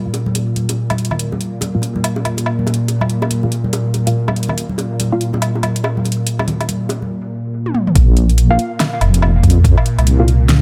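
Swung sixteenths at 142 BPM in a half-time 4/4 feel set up this heavy, meditative deep dubstep cut, drawn from a longer piece and built around a Bb5 chord. A tense, string-like drone holds a sustained Bb2 beneath everything from the start, its detuned sawtooth unison carrying vibrato, a noisy edge and ring-modulated grit inside its own reverb. Muted, detuned chord stabs pluck between Bb3 and F5, run through a filter sweep with phaser, subtle chorus, cassette tape colour and dub echo, pausing at 5.2 seconds and returning at 8.5. A deep house drum kit with a fat, overdriven snare, metallic hats, toms and woodblock plays throughout, while softly struck, ringing bongos and congas echo until 7.1 seconds. After a drum fill, the drop at 8.0 seconds brings in a punchy, overdriven electronic kick and an up-front, wobbling bass of sine and sawtooth, dark and chorused, spanning F1 to F2.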